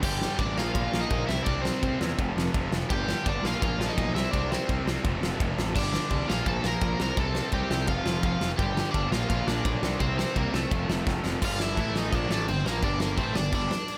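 Punk rock excerpt with an aggressive, raw mood in straight 4/4, built on a cycling power-chord progression that shifts at 11.4 seconds after a drum fill. An up-front crunchy overdriven lead guitar carries the melody over a big acoustic kit with punchy kick, fat snare and bright cymbals, while a growly fuzz-laden picked bass anchors the low end. Behind them, several rhythm guitars churn out the riff: one compressed and distorted, one warm and overdriven, and a dark, double-tracked sludgy guitar that sits very quietly and drops out at 11.4 seconds, all under light reverb.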